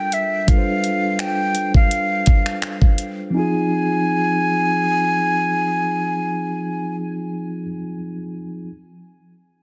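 A slow 84 BPM groove in 4/4 with a light 16th-note swing opens this short, late-night contemporary R&B fragment in F dorian, cut from a longer piece. An electronic R&B drum kit sits up front with a knocking kick, metallic hi-hats and finger snaps, its snare carrying soft clipping and a small-room character, but the beat drops out after 3.2 seconds. A mellow tine electric piano, clean and heard as if through built-in speakers, carries the accompaniment from the start to 8.7 seconds, moving from Gm9 to Fm7 as the second section begins at 3.3 seconds. Over it, a breathy concert flute with a straight tone and soft attack plays the melody in a narrow upper range, close-miked and touched by tape echo, until 7.0 seconds. The moody mix has light reverb and a dense, heavily limited modern master.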